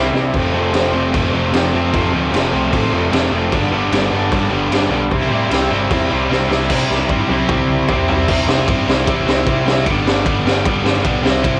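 Rowdy and rebellious, this short punk rock cut from a longer piece charges along in a straight 4/4, opening in half time before the sections shift at 6.7 seconds and again at 8.3 seconds. Three electric guitars stack up their riffs: a bright, crunchy overdriven part sits up front, a compressed, distorted one stays in the background until it stops at 8.3 seconds, and a dark, double-tracked overdriven guitar fills in behind them. An amped, growly electric bass adds a punchy low end beneath the guitars. The raw garage drum kit sounds gritty, saturated and warm with a rolled-off top in a small room, with a high-tuned snare, punchy kick, crashes, ride and toms, and fills mark the opening, the lead-in to the middle section and the middle section itself. Captured as a home recording on cassette with light reverb, the sound has a tape-worn character, while the harmony moves through F, G and C.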